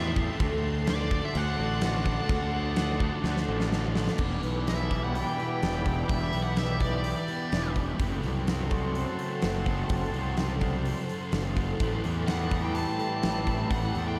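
Soaked in a huge, dreamy reverb, this excerpt from a longer shoegaze and dream pop track feels melancholic, with a growly, overdriven fuzz bass up front and a dark, distorted fuzz guitar riff beside it. A big acoustic rock kit with a punchy kick and fat snare drives it along, marking a drum fill before the section repeats at 4.2 seconds. Behind them, a lush, detuned unison pad holds sustained chords, a woody, shimmering twelve-string acoustic picks arpeggios, and a twangy clean electric plays its riff through reverse reverb, while a biting overdriven lead guitar with delay sings the melody until 7.7 seconds and returns at 12.3.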